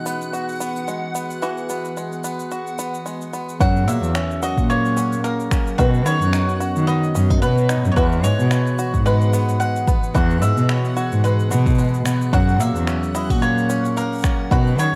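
This hopeful folktronica fragment, cut from a longer piece, opens on a warbling, nostalgic pad of detuned, lo-fi sustained chords with chorus and reverb. Fingerpicked bluegrass banjo arpeggios, twangy and percussive with delay, play from the start. A reversed, granular swelling texture sits dreamy and bright in the background, and overdriven electronic shaker and finger snaps, re-recorded in a large room, set a lightly swung 110 BPM groove in 4/4. At 3.6 seconds a picked bowl-back mandolin enters with a double-string melody carrying delay, while an intimate, airy cello plays the bass line up front with light vibrato and a soft sul tasto tone. A deep, overdriven electronic kick arrives at the same moment, also up front. The harmony moves through Eadd9, F#, and B before returning to Eadd9 and F#, all in a close, dry mix.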